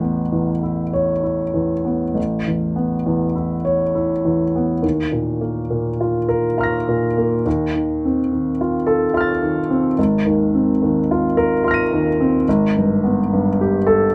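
A clear baby grand piano carries this short impressionist classical excerpt alone, sounding intimate and natural, with long sustain, audible action noise, and an up-front presence. The mood is serene and hazy, moving in a gentle 3/4 at roughly 64-74 BPM with a free, rubato feel. The harmony drifts through colored chords, opening on Aadd9 and passing through D#sus2 and F7/Eb before reaching Ab69 at 10 seconds and Gadd9/Ab near 12.5 seconds. The playing spans the keyboard from Ab1 up to Eb7, giving the texture both very low and very high notes. Close, detailed miking and a light reverb keep the instrument present while letting its resonance hang in the air across the 14.1-second passage.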